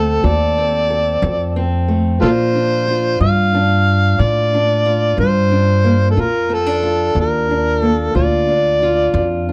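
Acoustic country blues in a rollicking, gritty 12/8 at 61 BPM, this short excerpt puts an overdriven, amplified harmonica up front with a jazz-style solo full of tongue slaps, scooped notes and light vibrato, over a dark, boxy fingerpicked parlour guitar and a growly, woody pizzicato upright bass, moving from F to Bb at 2.2 seconds in a dry, close 1970s-style small-room recording.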